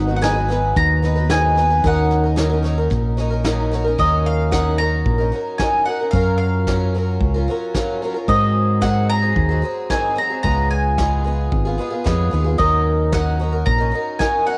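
Haunting and melancholic, this acoustic folk piece for a small band moves at a steady 112 BPM in 4/4 with a straight feel, set in Eb minor and tuned slightly low to A4 = 439 Hz. A picked mandolin carries the melody, its double strings giving a woody tone. Beneath it a picked twelve-string acoustic guitar, boxy and shimmering with octave-doubled strings, sits up front in the accompaniment, and both share a cassette tape coloring. A fingered electric bass, dark, round and punchy, sounds direct and amped and stands as the loudest part, dropping out at 13.9 seconds. A soft brush drum kit with a medium-tuned snare and punchy kick enters at 0.2 seconds, carrying the same tape character in a natural studio room sound. The harmony moves from Abm7 through Ebm7, Gbmaj7, Ab7 and Db7 before settling back on Ebm7. Light reverb gives this cassette home recording, cut from a longer piece, a modest sense of space.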